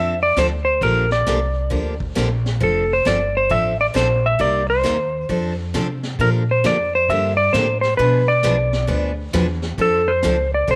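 A short, cheerful stretch of western swing cut from a longer piece, opening at once with a dark, clean lap steel guitar playing the melody up front, sliding and fingered in the range from A4 to E5. Beneath it, a bright, full-bodied steel-string acoustic guitar with fresh strings picks out the accompaniment, while a woody, thumpy upright bass with gut strings is plucked pizzicato and sits close and present. At 0.4 seconds a vintage brush drum kit joins from a distance, its brushed high-tuned snare, hi-hat and punchy kick sounding roomy and rolled-off at the top, well behind the other parts. The playful 134 BPM groove swings its eighth notes in 4/4, moving through F6, Bb6, Cm7 and a Bdim7 before settling back on F6 in F major. A light studio reverb gives the whole ensemble a gentle sense of space.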